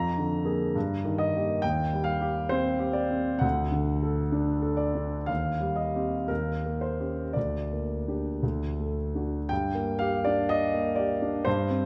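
A close, warm concert grand with a deep bass carries this brief excerpt from a bittersweet and passionate romantic character piece alone, moving in a flexible rubato 2/4 at roughly 54-69 BPM through G minor harmonies that turn from Bb7/F and Eb7 toward a D chord before resolving onto G minor at 9.5 seconds, all spanning D2 to Bb5 and ringing out in a lush recital-hall reverb.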